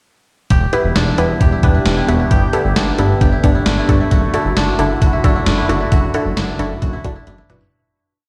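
A straight 133 BPM drum-machine beat in 4/4, with a thumpy kick and gated-reverb snare up front, drives this melancholic synth-pop piece alongside a fat, detuned sawtooth bass pulsing in eighth notes, while a mellow, woody koto ostinato with digital delay, warbling lo-fi off-beat pluck chords and a bright, evolving resonant pad move through Em, Gadd9 and Dadd9/F#, the mix sounding as if played over a big sound system in a bare stone room before it fades out from 5.9 seconds into a closing drum fill at 7.3 seconds.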